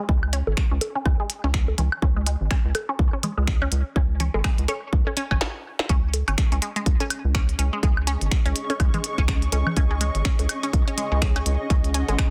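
Clinical and sparse, this swung minimal techno excerpt opens on a squelchy, bright blip pluck riff carrying a phaser, dub echo and sidechain pumping, while a filter sweeps over the synth arpeggio above a rubbery, pumping square bass, a punchy up-front kick, a clicky minimal kit of finger snaps, hi-hat and a tiny soft-clipped snare, and delayed woodblock, bongos and congas. A drum fill and a stop arrive at 5.4 seconds before the drop at 5.9 seconds. A cloudy, evolving granular pad with its own reverb then enters at 6.6 seconds, pumping behind the dry, dense and heavily limited mix.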